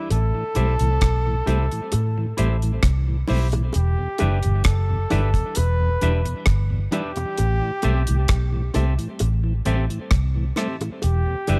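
A warm, close-miked flugelhorn with light vibrato and tape echo opens this serious, hypnotic roots reggae excerpt in E minor at 66 BPM, joined at 0.1 seconds by a dark, foam-muted fingered electric bass and a dry, up-front drum kit with tight kick, hi-hat and rim click. Soft-handed, high-tuned bongos sit in the background, while a mellow tonewheel organ with key click and slow rotary speaker enters at 0.3 seconds and a clean semi-hollow electric guitar at 0.6 seconds, both carrying tape echo. The harmony sways between Am7 and Em7 in a small room, and the passage is cut from a longer piece.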